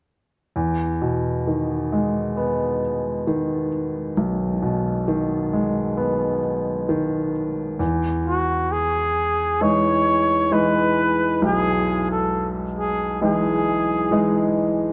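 A breathy, whispered flugelhorn with light vibrato and a soft attack enters at 8.3 s to sing a jazz-style melody over a clear baby grand piano, which has audible action noise and long sustain and opens on an Emaj7 chord at 0.6 s, giving this hopeful, emotional pop fragment an intimate, up-front closeness within the wet reverb of a recital hall.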